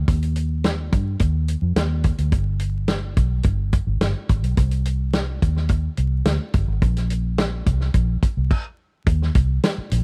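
Uptempo 1960s-style soul in a warm, uplifting mood, this short excerpt pairs a dark, round, foam-muted fingered electric bass with a dry, mid-forward drum kit of tight kick, medium-tuned snare, hi-hat and crash, both up front in a close, dark production dusted with vinyl crackle, before a stop from 8.5 to 9.1 seconds.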